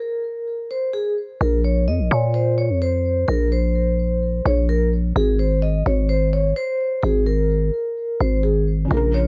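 Set in a small-room ambience, this brooding, dark half-time trap fragment opens with a ringing, metallic vibraphone melody played with soft mallets and a medium motor vibrato, joined at 1.4 seconds by an up-front, growling, buzzy 808-style bass, with a felt-muted upright piano adding soft accompaniment and audible action noise only from 8.8 seconds.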